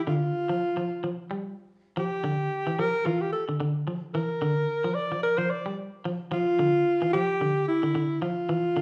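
Afrobeat at 110 BPM in 4/4, with a 16th-note swing and a defiant, intense mood in this short cut from a longer piece, tuned slightly sharp to A4 = 441 Hz. A semi-hollow electric guitar plays clean, picked arpeggios between D3 and G3 from the start, its bright hollow-body tone sitting up front. A breathy alto saxophone enters at 0.1 s to carry the melody from E4 to D5, playing in a mellow pop style with light vibrato, scooped notes and a smooth top. The saxophone is the solo voice and sits a little louder than the guitar, dressed in slapback echo and plate reverb. The pair share a moderate studio room with a short decay, and both play together through to the end at 8.8 s.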